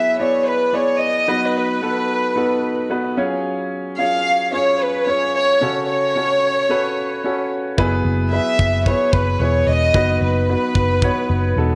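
Set in a straight 4/4 pulse, this piano-driven pop passage feels bittersweet and dramatic, taken from a longer piece. A chamber violin section carries the melody up front, its bowed sul tasto tone intimate and close, with light vibrato and a soft attack. Beneath it, a clear baby grand piano plays the accompaniment with an open, long-sustaining sound, moving through chords that sit over F# and passing through F# minor before returning to E/F# and B/F#. At 7.8 seconds a vintage muted picked electric bass enters low, dark, round and punchy from its foam mute, joined by a tight acoustic kick drum with a small-room character that drops out at 11.2 seconds. A moderate echo-chamber reverb and studio ambience give the ensemble a sense of space through to the cut at 11.8 seconds.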